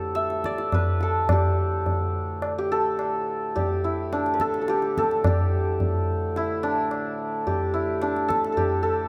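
Hindustani classical music in raga durga on D, this short cut from a longer piece moves at 107 BPM in a seven-beat cycle and gathers speed throughout, its mood meditative and radiant. The santur carries the melody between D4 and E5, its hammered strings shimmering and ringing close up front. Beneath it a pedal harmonium holds a low drone from D2 to A2, reedy and breathing, with a mellow, vintage, band-limited tone sitting well back in the mix. The tabla enters at 0.2 seconds with a high-tuned, short-ringing sound that is also placed up front, with the close feel of a small room. A wet recital-hall reverb surrounds the performance, and the music shifts into a new section at 5.2 seconds, running to 9.1 seconds.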